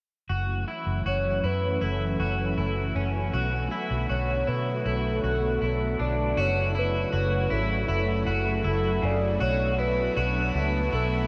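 A dreamy, reverb-soaked mix with a huge ambient tail opens this haunting, melancholic dream pop excerpt, which moves at an unhurried pace in a straight 4/4 feel and is cut from a longer piece. A vintage string machine with a viola voice holds soft-attack sustained chords thickened by ensemble chorus, while an electric guitar at the edge of break-up plays twangy, slightly broken-up arpeggios up front through analog chorus and delay. Underneath, a dark, foam-muted electric bass sits round and punchy in the foreground. From 1.1 seconds a soft, octave-layered synth lead carries the melody with a detuned sub-octave body, vibrato, chorus, phaser and analog delay. At 7.0 seconds a calm glass-harmonics texture with drifting overtones enters quietly in the background, washed in its own reverb, chorus and delay, as the harmony sways between F#m7 and Bm7.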